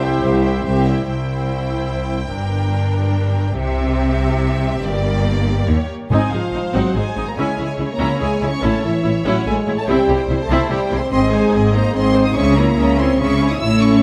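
In a straight 3/4 at 144 BPM, this heroic, soaring cue from a longer adventure film score opens in C mixolydian on a brief full-orchestra chord, where airy flutes, a clear oboe, a very quiet clarinet, trumpet stabs, a very quiet tuba and mellow French horns sound for only about a second. Throughout, lush, vibrato-rich violins carry the melody over a second, more distant violin line, smooth violas and focused cellos and double basses. The horns return with sustained chords at 6.1 s alongside a brief timpani entry from medium mallets, as the harmony moves from C and G minor toward A-flat, D-flat minor and A, all set in a moderate scoring-stage reverb.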